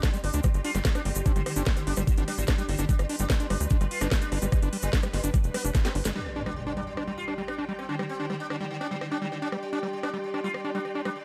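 Driving and intense, this psychedelic trance excerpt at 147 BPM in G major opens on a drop where a knocking up-front kick, a garage kit with cracking snare and metallic hats, a grainy egg shaker, a nasal sequencer bass and a squelchy, distorted acid bass riff push beneath a buzzing sitar melody with phaser and dub echo and an evolving wavetable pad with vintage 12-bit grit, while a faint wobble bass flickers briefly; during a drum fill the kick, shaker and sequencer bass fall away before 6.2 seconds as an electronic impact hits and a smooth bowed string section enters, with the strings, sitar, pad and acid bass all pumping to the sidechain.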